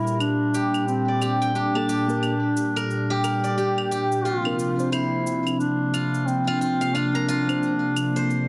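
A mellow, distant duduk sings a folk-style melody with scooped notes over a smooth, detuned sawtooth pad with chorus, while a bright steel-string zither rings out silvery fingerpicked arpeggios through a filter sweep and digital delay. This hypnotic organic downtempo piece in G minor moves at 89 BPM with a swung 16th-note feel, as tape-toned cabasa and claves enter at 0.1 seconds and a clean tine electric piano adds background accompaniment from 1.7 to 7.7 seconds. The harmony shifts from Gmadd9 to Bbadd9, all set in a lush hall reverb with a heavily compressed, radio-like sound in this short cut from a longer piece.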